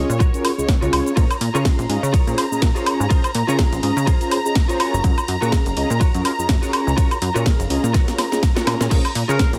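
A swung sixteenth-note groove in four drives this sensual, funky slice of filtered disco house, taken from a longer piece, with a punchy, tape-toned electronic kick sitting up front and a house kit of cracking snare, hi-hat, ride, crash, shaker and woodblock pumping against it. A plucky analog bass, built from sawtooth, pulse and triangle waves with ring modulation and a filter pluck on a fast attack, sits up front in the mix with a funky, decaying bounce. Above it, a mellow, round synth brass part with detuned saws, filter sweeps, chorus and phaser holds the accompaniment, while a lush, bowed studio violin section sustains smooth chords in vibrato. A clean, bright electric guitar recorded direct plays a compressed, picked riff under ensemble chorus, and the harmony moves between Gbmaj7 and Bbm7. After a drum fill from 7.9 seconds, a clear jazz-style trumpet section slips in with a brief Bb4 at 9.3 seconds, all of it set in light digital reverb.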